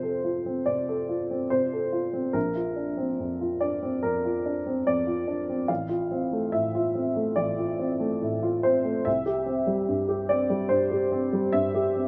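Neoclassical minimalist piano at 72 BPM in 4/4 with a rubato feel in F major: a brief, hopeful and intimate excerpt for solo upright piano whose worn, woody, slightly detuned tone sits present and up front across a range from A1 to F5, moving through F, Bbadd9, F/A and C within a moderate stone-room reverb.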